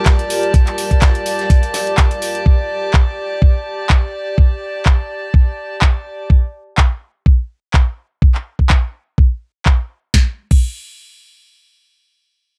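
A thumpy, sampler-style electronic kick sits up front in this trippy, hypnotic acid house groove at 125 BPM in G minor with a lightly swung 16th feel, joined by a booming analog drum machine with tape character that brings a crisp snare, handclaps, metallic hi-hats and crash cymbal in a short room. Over a Gm7 chord, a lush, mellow vintage string machine with sawtooth tone, a sub octave and ensemble chorus holds slow-attack sustained chords with sidechain pumping until 2.4 seconds, while a very quiet acoustic soul kit adds a fat, rolled-off snare and hi-hat, and soft, distant bowed chamber strings float above, also pumping, until 6.3 seconds. The overall sound is dry, and the harmony drops out at 10.1 seconds.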